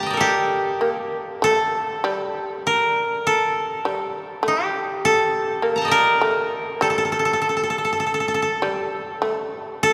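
Rubato phrasing drifts loosely around 50 BPM in 4/4, giving this short passage of Japanese traditional chamber music in G hirajoshi a still, solitary mood. Up front, the koto carries the melody between G4 and Bb5 with a bright, woody fingerpicked tone, while the fretless shamisen sits lower and softer beneath it as a second line from G3 to Bb3, its plectrum-plucked notes percussive and buzzing. Both play throughout the 9.9 seconds, set in a church or concert hall with a long cathedral reverb of 4.9 seconds, and the passage is cut from a longer piece.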